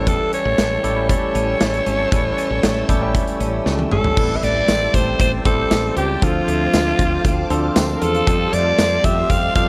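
Urgent and moody, this 1980s-style pop excerpt puts a breathy, raspy alto saxophone with slapback echo up front over barky tine electric piano, a growly fretless bass, a clean picked electric guitar riff with analog chorus, and a lush string machine with phaser and ensemble chorus in the background, while a punchy big rock drum kit plays a fill at 3.7 seconds and a very quiet jingly tambourine joins at 4.7 seconds in a small, lightly reverberant room.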